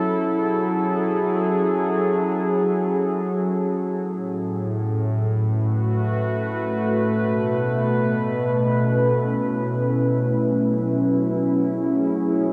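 Ambient excerpt in F# minor at 56 BPM in 3/4, tuned to A4 = 438 Hz, where a lone warbly, detuned tape-like pad sits up front, its slow-attack, long-release tones drifting through F#m7, A6 and B7sus4 before settling on F#7(no3) at 10.4 seconds, all bathed in a vast cathedral reverb with chorus and tape echo for a spacious, reflective, nostalgic lo-fi cassette feel.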